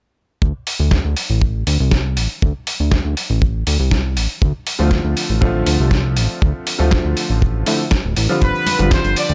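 A fat, detuned analog bass with tube saturation and a tight, dry kick open this groovy, sleek nu-disco excerpt at 0.4 s on a Dm7 chord, soon joined by a gritty, overdriven sampler-style kit of hi-hat and snare, then a clear, worn grand piano with tape echo at 4.8 s, before a bright, punchy trumpet section with light vibrato takes the melody at 8.4 s over cabasa and congas played with hard hands in the background, captured as a dry hardware recording with studio reverb.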